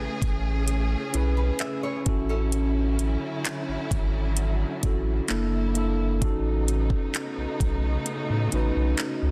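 Contemporary R&B at a slow 65 BPM in 4/4, this tender, smooth passage is cut from a longer piece and moves through lush extended harmony, from Amaj9 to Dmaj9/A at 2.1 seconds, then F#7alt and B9/A. A mellow tine electric piano carries the accompaniment with a lush chorus, its clean tone sounding as if through built-in speakers, while a symphonic string section holds sustained bowed chords with vibrato and expressive portamento. A deep, round sine sub bass sits up front, its fast attack giving way to long sustained notes. An electronic, produced drum kit enters at 0.2 seconds with a knocking kick, metallic hi-hats and handclaps, placed prominently in the mix. Between 1.4 and 3.6 seconds, a fingerpicked acoustic flamenco guitar adds quiet arpeggios touched by a digital delay, with audible finger squeak. Digital ambience surrounds the parts, and the dense, heavily limited modern master keeps the sound full and polished.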